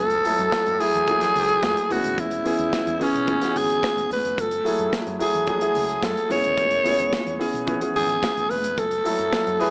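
Danceable and glamorous, this short disco excerpt moves at 109 BPM in a straight 4/4, set in F# minor with a tuning of A4 = 443 Hz. A breathy, raspy alto saxophone carries the melody up front from the opening moment, its pop-style vibrato lending a gritty edge while its top stays smooth. Beneath it, a round, amped hollow-body bass sits low in the mix, joined at 0.1 s by an acoustic drum kit with a tight kick, a medium-tuned snare and hi-hat, its rolled-off top keeping the groove warm and smooth. From 0.2 s a dark, mellow concert grand adds intimate accompaniment with audible action noise and deep bass, alongside very quiet, high-tuned congas that ring from a distant large room. The harmony circles F#m9 and C#m7 before settling on F#m7 at 8.8 s, and light reverb with small room ambience gives the mix a small speaker sound.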